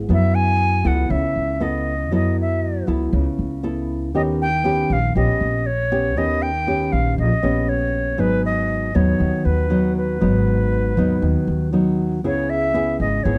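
Smooth and melancholic, this bossa nova moves at 119 BPM in a straight 4/4, a short passage cut from a longer piece. A fingerpicked nylon-string guitar sits up front with a full-bodied, deep classical tone, and the squeak of fingers on its strings can be heard as it carries the accompaniment. Beneath it, a pizzicato upright bass with gut strings gives a woody, thumpy foundation. From 0.1 seconds a silver concert flute takes the melody, also up front, its airy, reedy straight tone tongued and rounded by rolled-off highs. The harmony drifts through F#m11, D#7b13 and G#m7 before settling on C#m7, all wrapped in light reverb and a dark, warm production.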